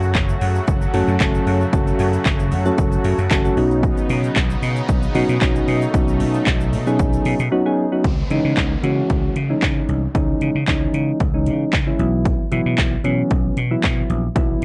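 A straight 4/4 pulse at 114 BPM drives this confident dance-pop excerpt in C# minor, where a punchy, overdriven house drum kit with metallic hats, handclaps and shaker sits up front beside a growly vintage slap bass and round, detuned electric-piano-like synth keys that enter at 0.9 s, while a slow-attack sawtooth supersaw pad and a grainy tube shaker fill the opening over F#m and Badd9 until a brief silence at 7.5 s, after which a downlifter arrives at 8.0 s as the chords move to C#madd9 and Bsus4, with the pad, bass and keys pumping to the sidechain and the whole mix carrying a worn, warbly cassette-tape pitch drift.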